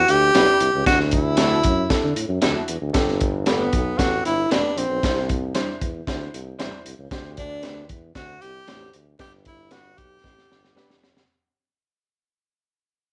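A breathy, close-miked tenor saxophone with slapback echo carries the melody up front in this uplifting, uptempo 1960s-style soul piece in G major at 115 BPM, fading throughout, backed by a woody, slightly detuned upright piano, a clear tuba bass with scooped notes sounding distant and roomy, a crunchy, gritty breakbeat drum kit with a punchy kick and high-tuned snare, picked stabs from a slightly broken-up electric guitar through a small old amp, and a very quiet, ringing vibraphone second line entering at 3.5 seconds, with light reverb and vinyl crackle over the mix and a drum fill arriving at 10.2 seconds.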